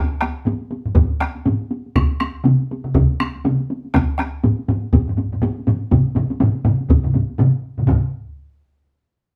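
A taiko drum ensemble opens this powerful, ceremonial passage of Japanese traditional music within the first second, with further drum parts joining at 0.9 and 2.0 seconds to build a four-part ensemble at 121 BPM in 4/4, its sixteenths carrying a light swing. Each drum is struck with hard sticks and sits up front, three of them close and dry while one carries the sound of a small room, all played live together in one space beneath a wet studio reverb. The drums fall away just after 8 seconds as a brief new passage begins at 7.9 seconds before the cut.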